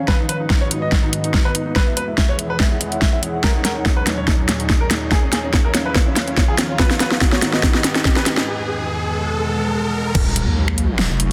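Heavy, menacing wobble dubstep in a half-time feel, this excerpt from a longer piece opens with a clear grand piano melody carrying tape echo over an evolving, morphing wavetable pad with phaser and sidechain pumping, while a warbling, nostalgic lo-fi pad sits in the background. An overdriven electronic kick and a layered drum kit with a huge snare, snaps, hi-hat and crash drive the build-up under a background riser, with the piano dropping out at 8.4 s for a break. At 10.2 s an impact lands the drop, where a saturated, detuned square-and-sine wobble bass with chorus pushes up front over an Ebmadd9 chord.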